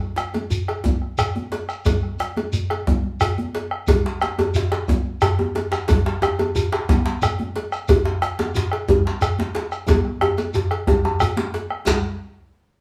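Festive and driving, this West African traditional drum ensemble rolls along at 120 BPM in a straight 12/8, heard as a short cut from a longer piece. A deep, dark bombo opens alone at the very start and sits up front, and congas, a djembe and shekere join a fraction later, with a metallic cowbell close behind. The congas are bright and high-tuned with a thin skin and a vintage, band-limited quality, while the first djembe is medium-tuned with buzzing metal rattles and the shekere adds a grainy, mellow texture. A second djembe arrives at 3.9 seconds, tight and cracking under hard hands, standing forward with a small-room character. The group plays live together in one room, with a wet large studio reverb around the sound, and a drum fill from 9.9 seconds carries the passage to its close.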